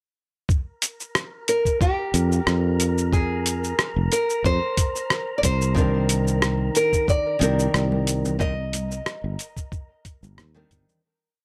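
Warm and wistful, this short sunset chillout piece sits at 91 BPM in F dorian with a light 16th-note swing, moving from Fsus2 to Cm9 over a gritty, compressed sampler-style kit of shaker, closed hat and rim, a thumpy up-front electronic kick, and a growly, sustaining fretless bass playing a dub-style line. A bright, fresh-strung nylon-string guitar with tape echo fingerpicks a motif-based melody of call phrases from 1.5 seconds, while a dark, breathy wind-like noise texture holds a high note in its own reverb. From 5.7 seconds a woody, old-strung second nylon guitar adds held drop-2 chords with syncopated pushes, joined by very quiet ringing congas. The dry, dusty small-room sound keeps the groove intimate as it fades out from 7.5 seconds to the end.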